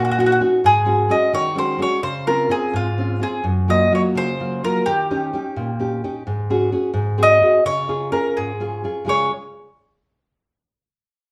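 Set in a wet, large studio reverb with the band playing live in one room, the sound carries lossy compression artefacts. This romantic, passionate Italian serenade in Db major moves in a rubato 6/8 at about 86 BPM, with a bowl-back mandolin singing the melody up front in picked double strings. A warm, deep classical nylon-string guitar is fingerpicked beside it, its fresh strings and finger squeak clearly heard, as the harmony moves from Ebm7 through Dbmaj7 and Gbmaj7 before settling on Db at 7.7 seconds.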